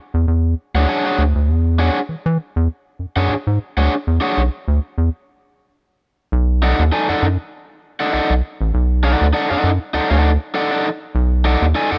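Funky and playful, this short funk excerpt at 99 BPM with a light sixteenth-note swing sets a rubbery, bouncy square-wave bass, entering at 0.1 seconds, under a crunchy, bright overdriven electric guitar from 0.8 seconds, both up front in a dry room, moving from E13 to B7#9 at 6.3 seconds after a stop that begins at 5.1 seconds.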